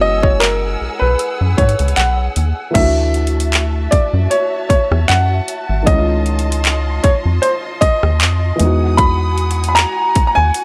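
Lightly swung sixteenths drive this romantic, tender contemporary R&B fragment, where a tape-warm trap kit of hard-clipped kick, metallic hats, handclaps, rim clicks and crash enters at 0.2 s beside a rubbery, hollow square-wave bass, while a felt-muted upright piano with audible action noise comps softly beneath a clear grand piano melody touched by analog delay, and a distant, lush string section adds vibrato and portamento to sustained chords in a dry, gritty room.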